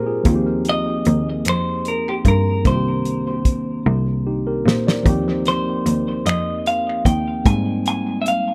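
Tender and warm, this short fragment of slow six-eight R&B sets a worn, slightly out-of-tune, lightly overdriven tine electric piano with analog delay over a bowed, focused cello bass with vibrato, while a dry, up-front soul drum kit with a fat snare, tight kick and finger snaps plays a fill from 3.9 to 5.1 seconds and a clean, picked, compressed semi-hollow electric guitar carries the melody from 0.7 seconds inside an echo-heavy mix with light reverb.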